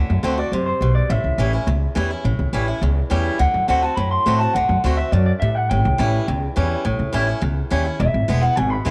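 Rockabilly with a retro, rowdy mood, this short cut from a longer piece drives along at 209 BPM in a straight 4/4, centred on A mixolydian. An electric guitar through a small old amp carries the melody between C5 and C6, its twangy, slightly broken-up tone trailed by tape echo. Beneath it, a picked swing-style acoustic guitar supplies a boxy, bright accompaniment, while a pizzicato upright bass with gut strings sits up front, thumpy and woody, spanning E1 to A2. All three parts play throughout the 8.9 seconds, moving through D7, A7 and back, before landing on E7 at 8.0 seconds. Light studio reverb surrounds the trio.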